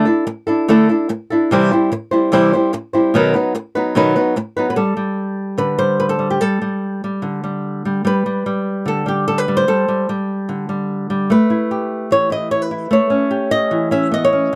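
A straight, even 4/4 pulse carries this dramatic, mournful flamenco passage, cut from a longer piece. A lone acoustic flamenco guitar plays throughout, fingerpicked and bright, sitting up front in a dry, close 1970s-style studio sound touched by light reverb. The opening phrase moves from Dsus2 through C to B. At 4.8 seconds the music shifts to a new section built on Gsus2, and it turns to A7 at 11.3 seconds. Finger squeaks on the strings add a human, in-the-room detail to the intimate recording.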